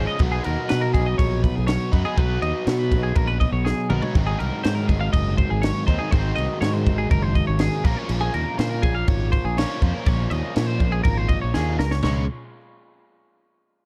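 A bright, twangy twelve-string electric guitar plays compressed arpeggios over a bright, overdriven semi-hollow guitar riff with spring reverb, while a growly, up-front fingered bass enters alongside them and a compact cocktail drum kit joins at 0.2 s with a punchy kick, high-tuned snare and dark china and crash cymbals. This playful, bright math rock and midwest emo passage moves in a straight 4/4 at 122 BPM through Cbmaj7, Ab7 and Bbm7, with drum fills around 3.7 s and 11.5 s. The dry, dark production is cut from a longer piece.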